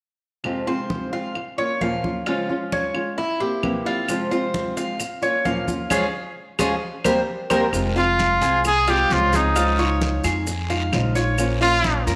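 A clear, punchy trumpet with vibrato and scooped notes enters at 8.0 seconds, sounding distant and roomy with a slapback echo, and carries a short pop-style solo melody over this danceable, warm Cuban son and guajira groove in F minor at 132 BPM. Up front, a fingerpicked flamenco guitar accompanies while a metallic, double-strung Cuban tres plays arpeggios. Hard-handed congas with a thick skin keep time, joined in the background by woody compressed claves and by grainy maracas, which enter at 4.1 seconds. After a band accent, a dark, thumpy pizzicato upright bass on gut strings and a raspy guiro come in at 7.7 seconds, all set in a wet echo-chamber reverb with small-room ambience.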